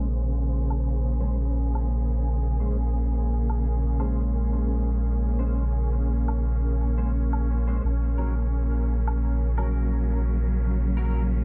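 A dark, close-sounding mix with little reverb and a filter sweep running through this short excerpt from a longer piece sets a deep, hazy ambient dub mood at 86 BPM in Bb minor, with a gentle 16th-note swing. A round, mellow sub bass sits up front on a low Bb while a rich chamber string section sustains bowed chords with vibrato, moving from Bbm9 to Gb/Bb at 7.8 seconds. Bright, twangy clean electric guitar stabs carry ensemble chorus and dub echo, and a filtered electronic woodblock with its own dub echo ticks in the background from 0.7 to 9.7 seconds.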